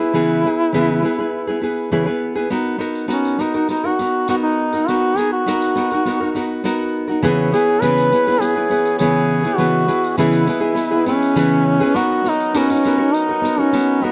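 A close-miked duduk carries the folk-style melody up front, its tone warm with vibrato and scooped notes, over fingerpicked classical nylon-string guitar whose finger squeaks are audible in this carefree, easy-going acoustic pop piece in B major at 102 BPM. A jingly, dry tambourine joins at 2.5 seconds, and a reedy, breathing hand-pumped harmonium enters in the background at 7.2 seconds with sustained chords as the harmony moves between E6 and Bmaj7. Light reverb and close, detailed microphones keep the sound intimate in this fragment cut from a longer piece.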